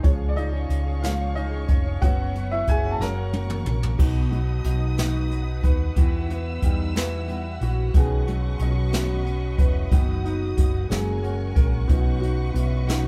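Up-front brushed drums with dark cymbals and a boomy kick drive this swaying, heartfelt six-eight pop ballad excerpt alongside a growly, round fretless bass, a clear, boxy upright piano, fingerpicked steel-string guitar arpeggios and lush, vibrato-rich bowed strings, all in a light-reverb live room, with a drum fill at 3.0 seconds before a dark, tight French horn section enters in the background at 4.0 seconds with a digital delay on its second line.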